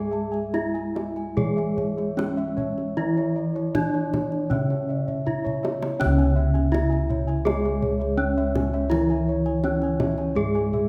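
Over a straight 4/4 pulse at 71-83 BPM, this hypnotic, shimmering Javanese gamelan passage, cut from a longer piece, sets an up-front bronze metallophone melody, struck with wooden mallets and beating in paired tuning, above a dry, close-miked metallophone accompaniment, round bossed-gong arpeggios, and mellow padded-mallet metallophone arpeggios in the background, anchored by bright bossed gongs in the bass, while a tight, soft-handed kendang enters at 0.3 s and plays a fill from 5.1 to 6.0 s before the second section begins, under a light reverb.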